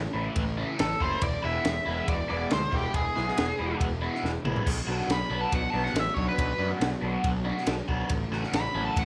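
Set in a moderate echo-chamber reverb, this carefree, upbeat indie rock fragment features a nasal lead guitar with a parked wah and slapback echo soloing up front over a bright, double-tracked overdriven guitar riff with phaser, a fuzzy picked bass, a compact cocktail drum kit with a high-tuned snare, punchy kick and dark, rolled-off cymbals that plays a fill at 4.2 seconds, and a very quiet, warbling vintage organ-string ensemble holding soft sustained chords through A, E, Bm and F#m7.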